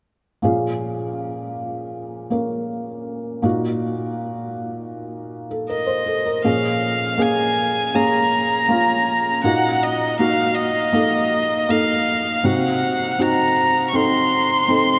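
At a slow 80 BPM in a straight 4/4, this melancholic, heartbroken pop excerpt in Bb minor unfolds from a longer piece. A felt-muted upright piano opens at 0.4 seconds with soft, mellow accompaniment spanning Bb2 to C5, its intimate tone sitting up front with the audible noise of its action. The harmony moves between Bbm7 and Ebm/Bb before a Cdim chord appears at 12.4 seconds, casting a final shadow of unease. At 5.7 seconds a single bowed violin takes the melody between Eb5 and Db6, its rich, smooth, even voice carrying vibrato close to the listener. The whole mix is soaked in a cathedral reverb with a long 6.8-second decay, giving the heartbroken mood a dreamy glow.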